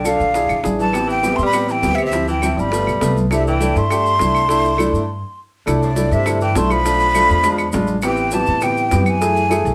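A brisk 203 BPM straight 4/4 groove drives this danceable, sophisticated Afro-Cuban jazz in C major, with thick-skinned congas and woody claves sitting in the background from 0.1 s, joined by very quiet round, low-tuned bongos and grainy maracas. Up front, a breathy metal flute with vibrato carries the melody over a punchy tenor saxophone second line, an intimate grand piano with audible action noise accompanying through chords such as Bb7#11, Am9 and E7b9, and a pizzicato upright bass. The band plays live in one room with moderate studio reverb, and a brief stop from 5.1 to 5.7 s leads into the next section.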